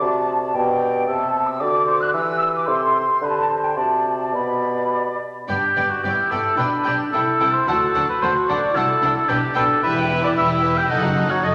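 This stormy, dramatic classical-period excerpt for symphony orchestra opens in G major at a quick 111 BPM in 2/4 with a rubato feel: an airy, hollow flute group sits up front beside a distant oboe, a dark clarinet lies in the background, and a bassoon with light vibrato carries the accompaniment. The flutes, clarinet and bassoon stop at 5.2 s, and at 5.5 s bowed strings played sul tasto with soft attacks take over. A violin section with vibrato has the melody, a second, floating violin section adds a line beneath it, and violas fill in the accompaniment, while cellos in the background and woody, distant double basses hold the bass and the oboe continues to the end. A wet scoring-stage reverb surrounds the orchestra as the harmony moves through chords such as D7/C and Em before closing on D#dim/F#.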